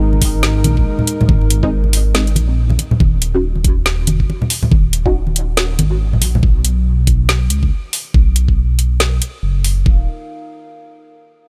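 A dry, up-front mix carries this brooding, cavernous deep dubstep cut with a swung half-time feel, built on a rumbling detuned saw bass, a knocking electronic kick and a garage kit's woody snare and metallic hi-hats, while low-tuned, soft-handed congas play until 6.4 seconds, a muted filtered chord stab with phaser and dub echo enters at 1.6 seconds, and a nasal, chorused analog pad holds sustained chords through the opening drop to 3.0 seconds before briefly returning at the close.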